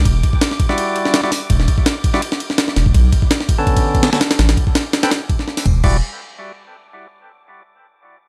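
A frenetic, raw drum and bass cut at 166 BPM with a jungle swing, built on a compressed, pitched-up sampler-style kit whose thumpy kick, medium-tuned snare, hi-hat, ride and crash sit up front with tape-warm grit, alongside a deep, thick, saturated sine sub bass in E minor. From 0.7 seconds a percussive tonewheel organ adds lightly overdriven stabs with key click and 12-bit sampler grit, thrown into dub echo over Em9 and Bm9 chords. Far behind, a dark, airy, breathy wind-like noise layer drifts in its own reverb, while the rest of the mix stays dry and gritty.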